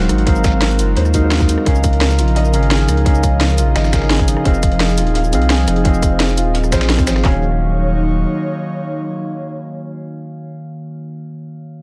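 A dry, echo-heavy mix opens this short cut from a longer liquid drum and bass piece, dreamy and melancholic at 172 BPM in a straight 4/4, in Eb dorian. Two electronic drum kits drive the drop from the start: one brings a tight kick, handclaps and a cracking snare up in the mix, while the other adds hi-hat, rim click, shaker and snare through analog delay, and a gritty, compressed sampler-style kit with high-pass-filtered hats and snare sits in the background. A deep, round sine sub bass holds the low end up front, and a mellow tine electric piano carries the chords through phaser and dub echo, moving from Ab13 to Db69 and Fm7. Behind it, an airy, breathy pad with chorus and sidechain pumping sustains soft detuned chords, while a felt-muted upright piano plays intimate, short-sustained arpeggios through analog delay. The drums stop at about 7.3 seconds as the harmony settles on Ebm7, with the upright piano fading just after. 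The sub bass holds until 8.3 seconds, the pad rings on to 10.8 seconds, and the electric piano lingers to 11.8 seconds.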